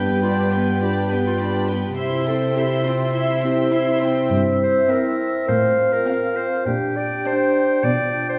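A clear, close-miked clarinet carries a second line through this cheerful, spirited classical-period orchestral passage in C major at 102 BPM, joined by a distant, roomy oboe, while the violin section sings the melody with soft-attacked vibrato and a second violin section, violas, a dark bassoon and mellow French horns holding sustained chords fill in beneath an up-front cello bass, all heard from further back in a reverberant recital hall until the violins and violas stop at 7.7 seconds.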